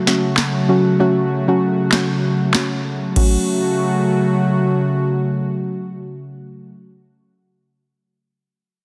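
Hypnotic and tough, this short dancehall excerpt sets a booming analog drum machine with deep kick, crisp snare, handclaps and crash up front until 3.4 seconds over a smooth, detuned sawtooth pad whose sustained chords pump with sidechain and subtle chorus, while a soft, round, nasal pluck with chorus carries the accompaniment to 7.4 seconds, all inside a lush hall reverb and a dense, heavily limited modern master.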